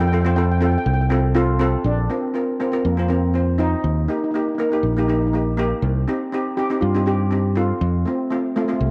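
Sunny and carefree, this short calypso fragment pairs a soft, dark steel pan melody played with soft rubber sticks and given a cassette-tape tint against a bright, airy steel pan accompaniment struck with hard rubber sticks, both double seconds, over an up-front fingered electric bass with a direct, electric tone, all in a small room with light reverb and a homespun cassette character as the chords move from F through Bbsus2, Eb and Cm back to F.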